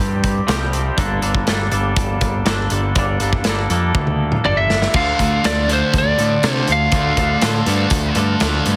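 A heavily compressed, radio-ready mix with light reverb frames this dark, brooding quiet-loud alternative rock cut in D minor at 121 BPM, where a bright, twangy clean guitar plays arpeggios through lush chorus and analog delay over a growling, overdriven picked bass and a punchy, smooth studio drum kit, until a drum fill at 4.0 seconds ushers in a slightly broken-up lead guitar melody at 4.5 seconds and a thick, up-front fuzz guitar riff at 4.9 seconds as the chords move from Csus4 and Gmadd9 to Dm.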